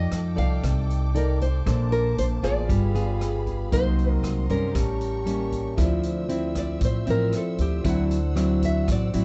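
A straight 4/4 bossa nova groove at 116 BPM drives this smooth, wistful fragment, where a woody, up-front pizzicato upright bass and a swinging big-band kit with hi-hat, rim click and punchy kick support a bright fingerpicked nylon-string guitar melody over a classical fingerpicked nylon-string accompaniment, a ringing vibraphone accompaniment and a bowed symphonic violin section with vibrato, moving through jazzy harmony from F13 into D minor at 5.8 seconds, where the melody guitar takes a solo, all in a dark production with light reverb.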